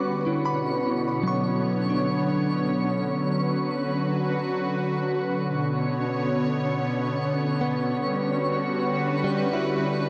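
A detuned sawtooth analog pad sits up front with soft-attack sustained chords colored by chorus and tremolo, while a bright, compressed clean electric guitar, recorded direct, picks arpeggios through vibrato and delay, and a twinkling granular texture adds FM sparkle and octave-up shimmer, all inside a vast, echoing space in this serene, spacious ambient piece at 73 BPM in 3/4 in B minor, moving from Bmadd9 to Gmaj7 near 7.9 seconds.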